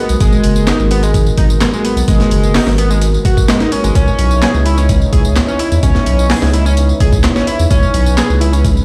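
A straight 4/4 breakbeat groove from a compressed, overdriven sampler-style kit with a thumpy kick and medium-tuned snare, backed by a quieter analog drum machine's handclaps, hi-hat and tambourine, drives this raw, gritty breaks excerpt, where a thick, up-front saturated sine sub bass sits under a screaming, guitar-like overdriven sawtooth lead riff with tube saturation, vibrato and digital delay, while a moody, mellow detuned analog pad holds sustained chords from G#m9 to C#m9 with sidechain pumping, all set in a bare room sound with large studio reverb and vinyl crackle.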